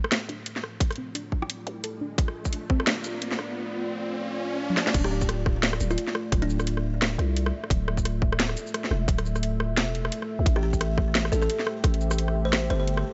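Cinematic and heavy, this half-time drum and bass excerpt at 174 BPM in D minor pairs up-front overdriven drums, with a cracking snare and bright hats, and a growling, buzzy 808-style bass from the start. It builds for 4.9 seconds, with filter sweeps on a deep, moody analog pad with chorus and sidechain pumping and on a warbling, lo-fi pluck arpeggio with delay, plus a rising effect and a drum fill. A tight electronic kick punches in early, drops out, and returns at the drop, where a woody, buzzing kalimba melody with delay enters at 5.0 seconds, as the chords move from Dmadd9 to Am7 at 10.5 seconds.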